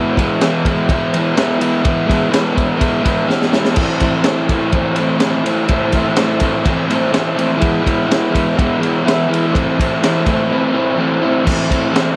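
An overdriven, double-tracked electric guitar sits up front, picking a crunchy riff between E and A minor in this raw, swaggering garage rock cut from a longer piece. A gritty, saturated breakbeat kit with a punchy kick, high-tuned snare and dark cymbals drives the straight 4/4 groove, snapping into a fill at 3.3 seconds. A reedy vintage combo organ then slips in at 3.7 seconds with clean sustained chords in the background, all within a moderate studio reverb.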